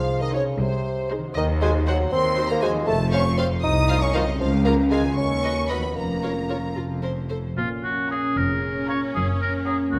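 A wet scoring-stage reverb surrounds this short cut from a sneaky, quirky, whimsical film cue in 6/8, where a dark, distant bassoon and a ringing, thumb-plucked harp play from the start over bowed cello and double bass sections, while a clear violin section carries the melody in the background. A rich violin section adds a second line and a close viola section fills in the accompaniment, both with smooth vibrato. The bassoon drops out at 6.7 seconds, and at 7.6 seconds a warm, up-front oboe takes a second line as a mellow French horn section holds tight, sustained chords.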